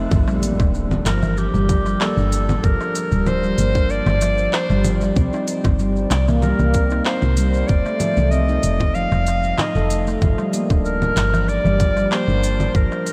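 Mystical and meditative, this excerpt of organic downtempo in G minor at 95 BPM sets ringing handpan arpeggios with tape echo over a woody, dark FM bass with sidechain pumping, a tight electronic kick, a produced kit of congas, handclaps, smooth hats and shaker, a crisp, very quiet darbuka and a faint impact at the start, while from 1.1 s a clear clarinet solo with light vibrato, scooped jazz-style notes, 12-bit sampler grit and tape echo drifts through a dreamy cathedral reverb across chords moving from G7(no3) through Cm7 and F7 to Gm7.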